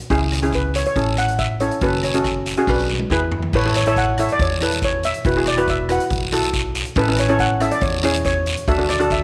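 A straight 4/4 calypso groove at 140 BPM in A major drives this festive, carefree excerpt, where a polished street-band drum kit with a boomy kick and a fill from 2.7 to 3.5 seconds supports a woody pizzicato upright bass, a raspy, close guiro, a bright, up-front double-seconds steel pan providing accompaniment, and, from 0.6 seconds, a dark, smooth lead pan carrying the melody, all set in moderate plate reverb.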